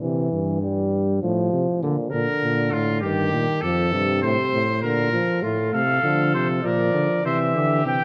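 Stately and elegant, this short cut from a longer classical brass canzona moves in an unhurried 3/4 at 100 BPM, set in Bb major. A mellow euphonium with light vibrato and a soft-toned bass trombone open together, the euphonium carrying the accompaniment up front while the trombone holds the bass line beneath it. At 2.1 seconds a bright trumpet enters with a second line, sounding distant and roomy yet still forward in the blend. A second trumpet, mellow and gently vibrato-touched, arrives at 5.7 seconds to take the melody in a higher register. The imitative writing layers these voices into a poised, stately texture, framed by a moderate concert hall reverb that lends a spacious glow.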